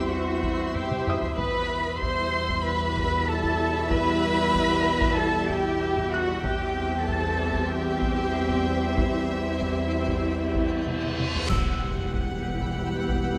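Set in a moderate scoring-stage reverb, this uneasy, tense suspense film cue, cut from a longer piece, layers sul tasto chamber strings (a warm violin melody over a dark second violin line, woody violas and cellos, and pure, floating double basses) with warm background French horns, a felt-muted upright piano with audible action noise, and a twinkling granular shimmer, while dry, heavy-stick taiko drums enter at 0.4 s, cymbal swells, clash cymbals and concert bass drum arrive at 9.0 s, and a reverse cymbal leads into an electronic impact and distant, mellow trombones at 11.5 s.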